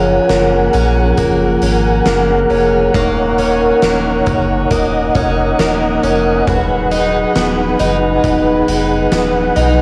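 A shimmering, octave-doubled twelve-string acoustic guitar sits up front, picking bright arpeggios through subtle chorus and analog delay, while a soft, flute-like tonewheel organ holds sustained chords with chorus vibrato and a touch of key click. This hazy, melancholic dream pop excerpt moves at a slow 68 BPM in Eb minor, drifting from Gbmaj9 to Ebm7 and then B6/D#. A round, deep sine sub bass anchors the low end, and an oversized, low-tuned drum kit joins at 0.3 s with a boomy kick, fat snare and hi-hat, its gritty, saturated sound pumping in a stone room, all bathed in lush hall reverb with the soft haze of a home cassette recording.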